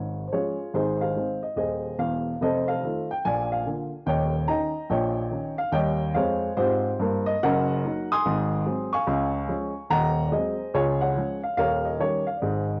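Exuberant and playful, this swinging stride-piano jazz fragment at 144 BPM features a solo upright piano, dark and woody with a short, mellow sustain, sitting up front in a small, lightly reverberant room on a cassette home recording, moving from Ab major to Db major at 7.4 seconds.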